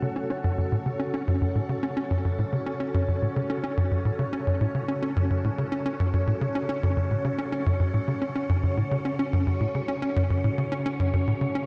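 Sustained string-machine chords in F# minor fill this short excerpt of ambient, sequencer-driven space music, while a wind-like tuned noise texture fades in behind them across its full 11.7 seconds. Beneath, a tight sequencer bass drives a punchy riff at 108 BPM in a straight 4/4, its sawtooth, square and triangle tones wave-folded and shaped with a plucky filter, a fast attack and a quick decay, touched by subtle chorus and analog delay. The full-ensemble string machine sits up front with the bass, lush and vintage, with a sub octave, a moving notch, slow attack, long release and a mellow ensemble chorus over a single F# minor chord. The airy, breathy noise layer stays in the background on one high note, carried by its own built-in reverb. Light reverb and a dark production give the whole a cosmic, mysterious mood.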